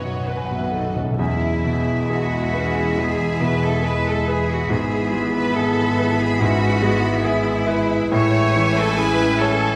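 Lyrical, lush classical excerpt with a rubato feel: a brilliant, up-front concert grand piano carries the melody over bowed strings, with violin sections on melody and second line, a faint viola section and a focused cello section, while a close, dry timpani fill opens the passage before oboe, a pure flute ensemble, a distant clarinet, bassoon, a mellow French horn section and a double bass section join at 1.2 seconds, all set in the moderate reverb of a scoring stage.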